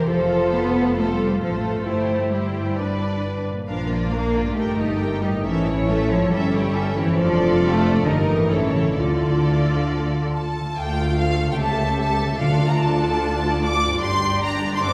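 In a straight 4/4 at 130-150 BPM, this dramatic, urgent classical excerpt settles into D minor from 3.7 s, with a focused, vibrato-rich violin section carrying the melody over a lush second violin line, smooth violas, sustained mellow French horns that drop out at 10.6 s, ringing thumb-plucked harp arpeggios, a prominent cello and double bass foundation, and two very quiet timpani entries at 9.0 and 12.4 s, all heard from further back in a reverberant scoring stage.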